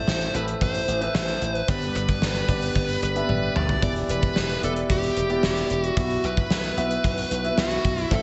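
A straight 4/4 pulse at 112 BPM drives this dramatic, nostalgic 1980s-style pop excerpt, where a gated acoustic drum kit with a tight kick and medium-tuned snare sits up front with a drum fill at 3.3 seconds, a glassy, punchy slap bass holds the low end, a clear concert grand piano with audible action noise and slapback echo plays accompaniment over chords moving from Am through G and Em7 to Bsus4, and a dark, overdriven lead guitar with delay carries the melody, all bathed in a lush hall reverb for a big arena sound.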